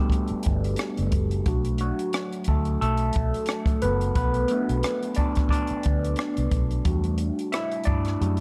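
R&B and neo-soul at a smooth, introspective 89 BPM with a light 16th-note swing, this brief cut features a bright, barky, overdriven tine electric piano soloing up front through a gritty combo-amp tone and phaser over Em11 and Bm7 chords, backed by a dry compact cocktail kit of hi-hat, rim click and punchy kick and a round, foam-muted vintage fingered bass, all set in a small, dark-sounding room.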